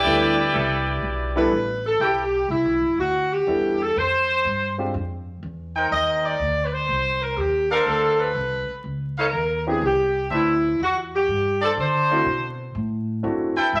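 Jazz swinging at 123 BPM in G major, where a brilliant trumpet section and a bright trombone section in the background open over warm grand piano and woody pizzicato upright bass, a clear saxophone section adds brief sustained chords, and from 1.4 s a mellow saxophone section with a smooth top carries the melody up front while a loose trumpet section punctuates with brassy stabs, heard through a large studio reverb and vinyl crackle.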